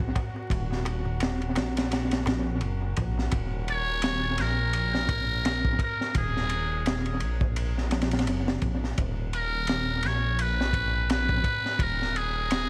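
A dark, smoky trip hop excerpt in Eb minor opens with a deep, rumbling detuned saw bass and a crunchy breakbeat kit of punchy kick, high-tuned snare and dark ride cymbal, both up front and set at a swung 85 BPM. Over them, a tense, string-like bowed drone hangs in the background with vibrato and its own reverb, while a clay-shelled darbuka sounds close and dry from 0.2 seconds; both fall away at 3.3 seconds. A trumpet with a metal mute takes the solo melody from 3.7 seconds, buzzy and raspy with a growling vintage edge, its line trailed by tape echo. The drums carry a saturated, gritty grit softened by a rolled-off top and analog delay. Vinyl crackle and small room ambience give the echo-heavy mix its smoky haze as the chords move from Ebm through Ab5/Eb and Bmaj7/D# to a closing Ebsus4.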